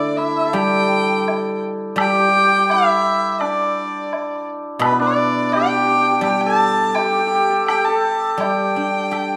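Chinese traditional chamber music in a pastoral, graceful mood, this short excerpt, cut from a longer piece, moves at 84 BPM in 4/4 with a rubato feel, set in the G gong mode. A single bowed erhu carries the melody up front, its rich, earthy tone coloured by light vibrato and portamento, yet with a slightly distant quality. Beside it, the hammered dulcimer plays a second line, shimmering and ringing close to the listener. The guzheng, played with fingerpicks, supplies a silvery, ringing accompaniment that reaches down into a lower register beneath the other two. A woodblock joins at 0.6 seconds and sits in the background, its small-room sound touched with bright cymbals. A moderate recital-hall reverb with a 1.5-second decay surrounds the ensemble.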